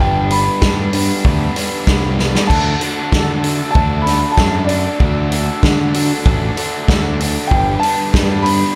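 A dark, woody upright piano carries the wistful melody in this short indie rock excerpt, its long sustain trailed by slapback echo and digital delay. Two bright, overdriven electric guitars play jangly riffs, the lower one thickened with lush chorus, over a growling, overdriven picked bass and a punchy vintage drum kit with dark cymbals at a straight 96 BPM in G major. After a drum fill at 2.2 seconds, a very quiet tonewheel organ slips in at 2.5 seconds with smooth sustained chords through a rotary speaker, as the harmony moves from G to D and back, all set in a recital-hall reverb that gives a big arena sound.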